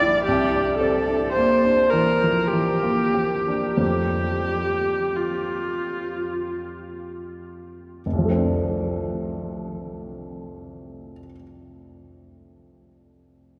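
In a rubato 3/4 that slows over its first 8.0 seconds at 41-57 BPM, this pastoral, luminous impressionist classical excerpt in F major pairs an up-front bowed viola, singing a smooth melody with vibrato between F4 and D5 until 6.6 seconds, with an intimate baby grand piano whose audible action noise and short sustain carry the accompaniment from F1 to G4 through chords of C9, Fadd9 and F6 until 13.6 seconds, all bathed in a wet cathedral reverb.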